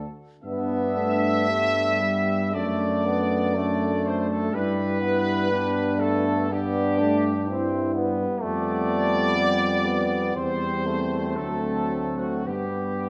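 A slow, hymn-like brass band passage in G major opens with the full ensemble together at 60 BPM, its rubato pulse lending a tender, lyrical mood. Up front, a trumpet section sings the melody with light vibrato, while a mellow French horn section carries a soft-attacked second line in the background, a brilliant, roomy trombone and a close-miked euphonium with vibrato fill out the accompaniment, and a warm, punchy tuba anchors the bass. The recital hall reverb is wet, and the harmony moves from G through D/F# and a G7/F to C/E and D7 before settling back on G at 12.5 seconds.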